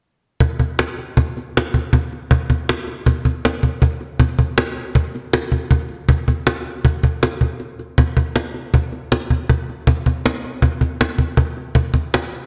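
Set in a straight 5/4 at 159 BPM, this wistful, restless rock fragment, cut from a longer piece, is carried by a lone cajon from 0.4 to 12.4 seconds, with a brief break at 7.6 seconds. The cajon sounds woody and soft-handed, with faint snares, miked close and placed up front. A lush hall reverb and bright 1980s-style digital production give its acoustic tone a polished, spacious sheen.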